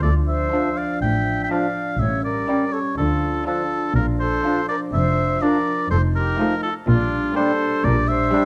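Playful and mischievous, this short cinematic film cue in D minor moves at 123 BPM in a straight 4/4, with a muted violin section carrying the melody from 0.5 s and a second muted violin section adding its own line, both veiled and barely audible. A warm oboe sits up front among the second lines, joined by an airy, distant concert flute and a clear clarinet in the background, while a roomy bassoon accompanies and a mellow French horn section holds tight sustained chords. Dark con sordino viola, cello and double bass sections fill out the accompaniment and bass in close, detailed sound with light reverb, the cello and double bass stopping at 8.2 s.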